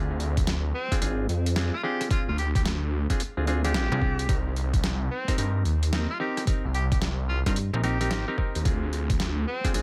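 A mellow, hollow clav opens this excerpt with sidechain-pumped stabs that trail a delay, joined from the start by a thick, swirling detuned saw bass run through a phaser and tube saturation, sitting up front. This is swaggering, playful glitch hop at 110 BPM in 4/4 with a swung sixteenth-note feel. A gritty, pitched-down, sampler-style boom bap kit of hi-hat, rim click and a medium-tuned snare comes in with an overdriven, thumpy electronic kick. A bright tenor saxophone with vintage vibrato carries the melody from 0.7 seconds, its lines echoed by a delay. From 3.9 to 8.3 seconds a snappy, metallic FM bass with a slap-like attack adds a digital bite alongside the saw bass, over harmony moving from Dm7b5 to Cm7 and back. The mix is dry and close, with the basses and kick louder than the clav, drums and sax.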